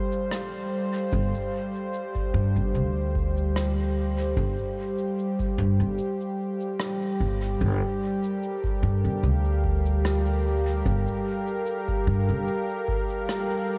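A dreamy mix, soaked in huge ambient reverb, frames this deep, meditative ambient dub piece, cut from a longer work. Up front, a smooth sawtooth analog pad with a slow attack and chorus holds sustained chords from the start. Soon a dark, woody upright bass joins, played pizzicato on gut strings; it sits thumpy and close with tube saturation, beside a deep, tape-warm electronic kick drum. Cabasa and rim click, played with brushes in a studio room, carry a dub echo over a lightly swung sixteenth-note feel in 4/4. A break at 6.0 seconds leads into the second section at 7.6 seconds, where the harmony shifts from F/G to Gm7.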